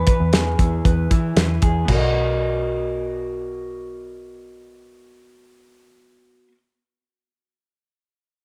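Nostalgic and bright, this short cut of jangly indie pop moves at 116 BPM in a straight 4/4 in B major, with a semi-hollow electric guitar voicing a brief clean, hollow-bodied melody on B4 through cassette tape and analog delay until 1.3 seconds, while a slightly broken-up electric guitar through a small old amp plays up-front arpeggios and a foam-muted, round picked bass holds the low end. A cloth-damped, thuddy drum kit with a fat snare, tight kick and dark cymbals plays only until 2.0 seconds, as the harmony shifts from E to Bmaj7 at 1.9 seconds. The whole has the light reverb and small-room ambience of a home cassette recording.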